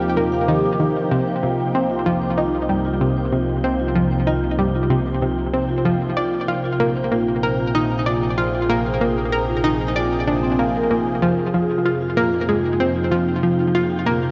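Ambient, sequencer-driven space music in F minor at 95 BPM, expansive and mysterious, where a bright, up-front analog pluck riff with chorus and delay rides over soft-mallet vibraphone arpeggios, a swirling phased analog pad of detuned sustained chords, an evolving analog drone bass, and a breathy wind-like tuned noise texture fading in from the background, all bathed in plate reverb, with shimmer on every layer but the drone, and a worn, warbling cassette-tape sound as the chords move from Eb through Cm7 and Bbsus4 to Fmadd9.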